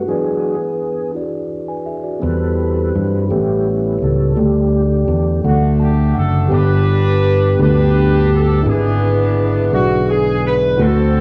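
Gospel in a straight 6/8, uplifting and reverent, heard as a short cut from a longer piece with the soft grain of a cassette home recording in a small room. A mellow tonewheel organ carries sustained chords up front from the start, its dark, lightly overdriven tone turning through a slow rotary speaker and chorus vibrato, and it takes the lead over the opening 6.5 seconds. Beneath it, a clean tine electric piano sits in the background as accompaniment, adding a brief fill just before the second section begins. A fingered electric bass enters at 2.2 seconds, round and punchy, its dark amped sound placed prominently in the mix. At 5.5 seconds a horn section takes up the melody, distant and roomy with a light vibrato, as the harmony moves from a suspended chord to its resolution and settles onto the home chord.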